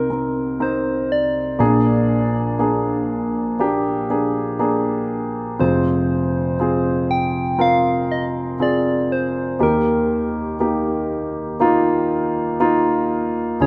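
This rough home demo mix is bathed in a moderate plate reverb, giving this short cut from a longer pop piece a roomy, unpolished sound. A warm baby grand piano carries the accompaniment throughout, worn and up front with a long sustain, its part reaching far down into the bass. Above it, a soft struck synth lead plays the melody at a lower level. Its round, keys-like FM tone is bright yet gentle, with a fast attack and decaying notes colored by chorus, vibrato and a vintage warble. The mood is melancholic and heartbroken, with a straight feel in four. The harmony moves from Cm7 to Bb7, then shifts at 5.6 s into a new section built on Fm and Eb.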